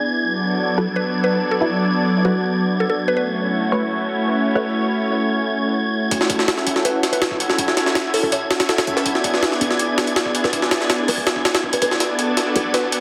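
Frenetic and raw, this 163 BPM drum and bass and jungle cut in F# minor opens on a lush, detuned unison pad with 12-bit sampler grit, an airy wind-like noise texture, muted dub chord stabs soaked in phaser and echo in the background, and a woody, mellow mallet-like pluck, before a gritty, pitched-up jungle sampler-style kit with a thumpy kick and high-tuned snare bursts in up front at 6.1 seconds to drive a filter-swept build-up, topped by a drum fill at 12.0 seconds, all set in a wet echo chamber under a dense, heavily limited master with vinyl crackle.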